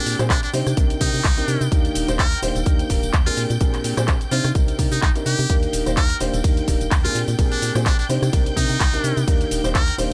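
Euphoric, joyful piano house at 127 BPM in Eb major, cut from a longer piece, where a buzzy, metal-muted jazz trumpet with scooped notes and dub echo carries the melody over a woody, slightly detuned upright piano riff, a hollow, organ-like FM bass and a lush, distant violin section holding sustained chords, the piano, bass and violins all pumping under a punchy, up-front electronic kick, while a house kit with bright hats, handclaps, ride, rim click and shaker, plus a very quiet, dry tambourine, swings the 16ths through a small room as Bb13, Cm9 and Ebmaj7 cycle.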